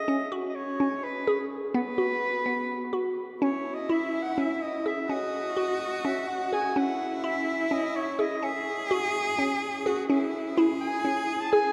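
A vast, echoing cathedral reverb washes over this brief excerpt of contemporary chamber music, lending it a restless, pensive air as it moves in an uneven 7/8 metre. A clear soprano saxophone carries the melody from the opening moment, played in a classical style with light vibrato and a distant, roomy presence. Just after it, a glassy, crystalline wavetable pluck spins arpeggios beneath, its bright, nasal digital tone shaped by a fast attack, short decay, filter sweep and chorus. At 3.4 seconds a single bowed cello joins with a focused, close second line and its own vibrato. The harmony circles around C# minor, opening on a suspended chord and an open fifth on B before C# minor alternates with open fifths on F# as the piece is cut off mid-flow.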